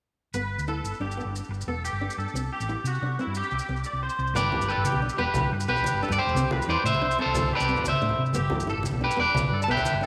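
Warm and sunny, this short highlife guitar band excerpt moves at 120 BPM in a straight 12/8 in G major, rocking between G and C chords. A fingerpicked nylon-string guitar with bright fresh strings and audible finger squeak, twangy scooped clean electric guitar arpeggios with ensemble chorus and tape echo, a dark, round hollow-body bass and grainy, close maracas play from the start. At 4.4 seconds an up-front, slightly broken-up electric guitar takes the melody through spring reverb, joined by low-tuned, thick-skinned congas that sit distant in a large room, all bathed in a lush echo chamber.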